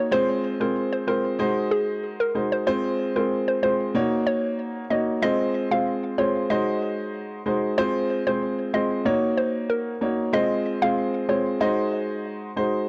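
A straight, steady dancehall groove carries this tough, hypnotic fragment from a longer piece, where a worn, up-front baby grand piano cycles through Fm, Ab7 and Ebm7 chords beneath a hollow, bouncy square-wave pluck melody, mellowed by chorus and tape echo, that ends at 12.1 seconds, leaving the piano to ring alone until 12.9 seconds in a small room with light reverb and a dry, gritty cassette character.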